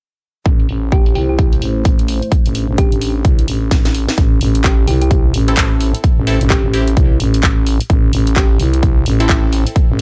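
Bouncy and swaggering, this cut from a longer bass house track in A minor moves at 129 BPM in 4/4, with a 60% swing on the sixteenths and little reverb. A punchy, layered electronic kick sits up front, joined by a house drum kit of handclaps, warm low-passed hats and a cracking, filtered snare; the drums carry a filter sweep through the opening stretch and break into a fill at 3.7 seconds. Under them, a thick, growling FM bass holds the low end with overdrive and sidechain pumping, and it takes its own filter sweep from 4.2 seconds onward. A deep, moody analog pad with chorus lays dark sustained chords in the background until 4.2 seconds, while a round, tine-like synth pluck resembling a thumb piano plays a mellow, chorused melody. At 5.5 seconds a nasal, band-passed chord stab arrives, bright and detuned, treated with phaser, digital delay and sidechain pumping.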